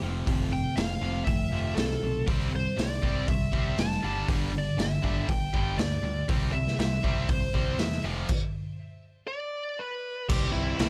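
Quiet-loud alternative rock with a restless, anthemic mood, this clip from a longer piece opens on a bright, twangy twelve-string electric guitar playing chorus-drenched arpeggios that last only until 2.3 seconds. A distorted electric guitar riff sits in the background alongside a growling picked electric bass with overdrive, while a raw garage drum kit enters at 0.3 seconds, up front and saturated, with a boomy kick, dark cymbals and a pumping small-room sound. From 0.5 seconds a bluesy overdriven lead guitar takes a solo melody, its distortion trailed by tape echo. A second overdriven electric guitar adds riff work from 2.3 to 8.3 seconds, and the band hits a stop before the final chord. The mix is dry and gritty, with the drums carrying the most weight.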